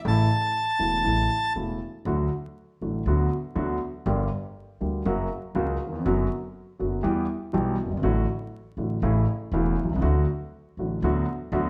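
A reedy, dark bandoneon sounds a high A5 up front from 0.1 to 1.5 s. A polished, deep-voiced concert grand, playing from the very start at 0.0 s, carries this passionate, elegant rubato tango in D major at 120 BPM over woody pizzicato upright bass, with chords moving from D through Bm/D, Gm and F# toward Em and A. The band plays live in one wet, large studio with vinyl crackle, in a fragment cut from a longer piece.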